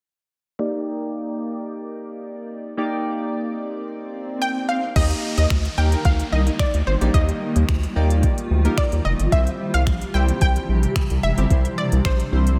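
Glossy, retro chorused synth keys open this carefree dance-pop excerpt at 0.6 s, pumping against a sidechain as a filter sweep moves across them. A swell and downlifter effect enters beneath at 3.7 s, and at 4.4 s a punchy, lush unison pluck takes up the melody through analog chorus and delay. At 5.0 s a smooth R&B drum kit arrives up front with a soft kick, finger snaps, silky hats and a crash, joined by a round, deep analog bass that pumps along with the keys. Soon after, a cloudy, evolving granular pad adds sustained chords in its own reverb, keeping the upbeat groove airy under light room reverb.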